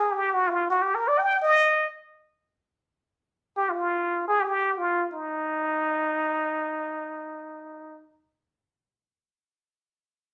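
This jazz excerpt unfolds in free time with a late-night, cool mood, carried by a lone trumpet with a plunger mute that plays throughout its 8 seconds, ranging from Eb4 to G5. The close-miked, up-front horn has a clear yet muted tone, colored by plunger wah-wah, light vibrato and scooped notes in a jazz style. The piece moves through three short sections, with new ones arriving at 3.0 and 5.1 seconds; it is tuned to A4 = 439 Hz and set in a moderate studio reverb, heard from further back in the room, with some lossy compression artefacts.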